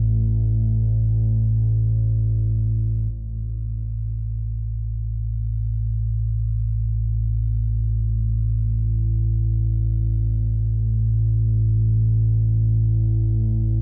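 A deep, rumbling drone sounds alone from the start and holds through to 13.8 seconds in this dark, desolate ambient fragment in free time, tuned to A4 = 441 Hz. Built from detuned triangle and sawtooth tones with ring modulation, it has a nasal, ominous edge, a slow attack, long sustain and a long release, sitting up front between A1 and A2 with its own built-in reverb. The production is warm and shadowy, with little room ambience.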